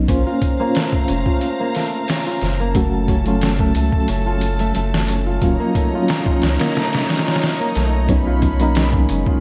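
A round, deep analog bass sits up front in this smoky, cinematic trip hop excerpt, its square-and-sine tone shaped by a filter pluck and tube saturation, with fast attacks that sustain into dark low notes. Beside it, a gritty sampler-style drum kit, compressed and pitched down, pushes a thumpy kick, a medium-tuned snare and hi-hat forward in a straight four-beat groove. A reedy electric piano heard through its built-in speakers carries the accompaniment, its clean tone shimmering with fast and harmonic tremolo. Behind these, a close, intimate studio string section bows soft-attack sustained chords sul tasto with vibrato, while a fingerpicked concert harp rings out arpeggios through tape echo. The harmony moves from Bbmadd9 to Gbm, Ebm7 and Badd9, all wrapped in light reverb, digital ambience and a bed of vinyl crackle across the 9.4 seconds.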